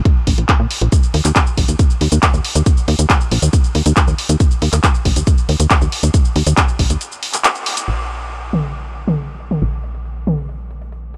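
Uplifting trance with a euphoric, bittersweet mood, cut from a longer piece, where a punchy, up-front electronic kick drives until 6.9 seconds alongside a layered house kit of bright, low-pass-filtered hats, handclaps, shaker and toms, while a tight sawtooth-and-square sequencer bass with ring modulation, a filter pluck and sidechain pumping runs from 0.3 seconds, breaking at 7.0 seconds for a band accent at 7.4 before the kit and bass carry on in light digital ambience.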